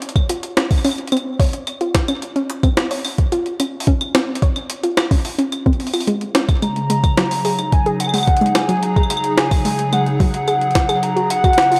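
A wistful, playful IDM excerpt in a dark, echoing chamber, where gritty, pitched-up jungle sampler drums with claves, hi-hat and a high-tuned snare ride over an overdriven soft kick while a round, tape-worn pluck arpeggiates through chorus, delay and shimmer reverb, until at 6.6 seconds a hollow, flute-like pad and a warbling, nostalgic vibrato lead arrive together as the chords move from Db to Ab7sus4.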